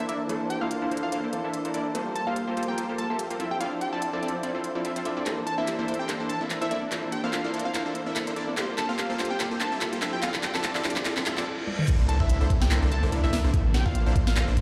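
Future bass at 145 BPM in a swung, half-time 4/4, bittersweet and dreamy, cut from a longer piece and moving through lush extended chords from C13 to Gm11, Dm9 and Bbmaj9#11. A catchy, full-bodied unison lead carries the melody high up, roughened by vintage 12-bit sampler grit and tape echo. Underneath, a bright, brilliant baby grand piano sits in the background until 5.3 seconds, when a round, tine-like synth pluck with chorus takes over with mellow arpeggios, while a smooth, bowed symphonic string section holds sustained chords throughout. A punchy, detuned supersaw stab plays a riff up front under a long filter sweep as the build-up gathers, and a trap kit with a woody snare and crisp hats runs a drum fill, joined by very quiet risers, a reverse cymbal and a downlifter. At 11.9 seconds the drop lands with a thick, saturated sub bass and a knocking electronic kick, and the pumping parts breathe against the beat. 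The mix carries light reverb and the stony echo of a bare room heard through a big sound system.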